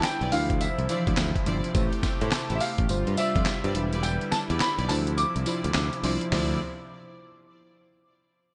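A clear grand piano melody opens this confident, bouncy new jack swing clip, joined from the start by a mellow FM electric piano, a brassy analog pad, a studio string section, a fingered electric bass and a sampler-style drum kit, all over a swung sixteenth-note groove. The dusty, gritty kit puts handclaps, hi-hat, snare, tambourine, toms and a thumpy kick up front, colored by 12-bit sampler grit and gated reverb. Beside it, the growly, punchy bass drives the low end, while the soft, round electric piano comps through chorus and phaser, and the piano line carries lush chorus and digital delay. In the background, the detuned sawtooth pad holds sustained chords and the bowed strings add smooth, vibrato-rich stabs over a Dm9, Am7, G7sus4, Em7 progression that circles back to Dm9. The kick drops out at 4.0 seconds, the piano melody stops at 5.7 seconds, and the remaining parts end around 6.6 seconds, all set in a bright 1980s-style digital production with light reverb.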